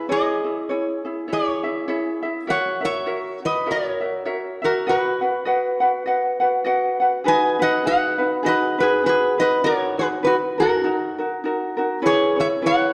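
Swung eighth notes in an easy 4/4 carry this languid, dreamy Hawaiian piece, cut from a longer work, as a metal-body resonator slide guitar, played with fingerpicks, sings the melody in a metallic, nasal voice up front. A light, fingerpicked ukulele sits equally close beside it, and at 7.2 s the harmony turns toward a minor centre. A wet scoring-stage reverb and a dark production lend the whole a drifting, soft-focus glow.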